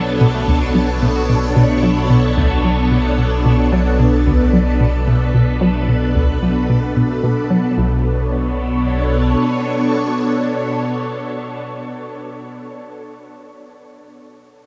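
Swirling, phased string-machine chords open this mysterious, expansive excerpt of sequencer-driven ambient space music at 111 BPM in B minor, joined from the start by a squelchy, resonant blip-pluck riff, a fat, ring-modulated analog bass holding B1 until 9.4 seconds, and a clean semi-hollow electric guitar arpeggiating in the background through delay and shimmer reverb as it fades out by 7.8 seconds, leaving the strings to sustain alone to 12.9 seconds in a vast, echoing space with a cassette-tape tint.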